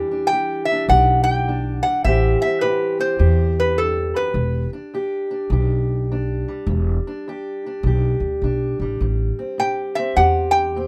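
A swing feel at 103 BPM in 4/4, with the eighths swung at 64%, carries this mournful, soulful slice of acoustic country blues in E minor, tuned to A4 = 441 Hz. A fingerpicked steel-string parlour guitar plays the accompaniment from the very start, its boxy, dark tone moving between Em7 and Am7 chords. An upright bass enters at 0.9 s, plucked on gut strings with a woody, thumpy low end. A metal-body resonator slide guitar, played with fingerpicks, carries the melody in a high register with a metallic, nasal voice, falling silent at 4.7 s and returning at 9.6 s. All three instruments sit up front, wrapped in a light reverb.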